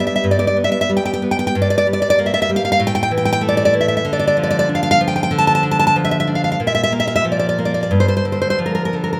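A moderate recital-hall reverb, about 1.4 seconds long, surrounds an up-front nylon-string guitar whose fresh strings sound bright, with an audible finger squeak. This intimate, wistful romantic piece for solo classical guitar is in D minor and 4/4, tuned to A4 = 439 Hz, and moves with a rubato feel between 78 and 98 BPM across a brief fragment cut from a longer work. The fingerpicked guitar spans G2 to A5, passing through G6, Gm7, A5 and Dm, which arrives at 4.1 seconds, before Bb5 and a closing G5 at 7.9 seconds.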